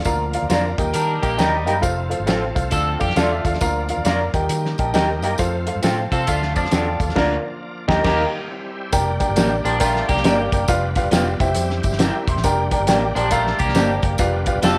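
A small-room echo-chamber sound frames this uplifting, danceable excerpt of uptempo 1960s-style soul at 136 BPM in F mixolydian, swung in 4/4. A dark, worn grand piano sits up front with audible action noise and plays fills at 0.9 and 4.5 seconds. Beneath it are a fat-snared soul kit with a tight kick, a round, foam-muted fingered bass and a jingly tambourine in the background, while a twangy, slightly broken-up guitar through a small old amp plays stabs and a clean guitar with lush chorus carries the riff. Further back, a gritty, overdriven tonewheel organ holds sustained chords through a slow rotary speaker with key click, and the band hits an accent at 7.2 seconds before the progression moves to Gm/F, G7/F and C/F.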